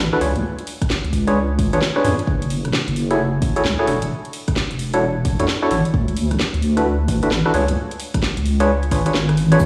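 A deep, wobbling sine-and-triangle bass with tube saturation and sidechain pumping anchors this late-night, soulful two-step UK garage excerpt at 131 BPM with a swung 16th feel, joined by hollow, percussive organ stabs colored with chorus and digital delay over C#7b9, F#m9, E13sus4 and D69 chords, a house kit of cracking snare, rim click and metallic hats, and a punchy layered electronic kick that drops out from 9.1 to 9.6 s before a grainy egg shaker closes at 9.6 s, all set in a plate reverb and the stony ambience of a bare room.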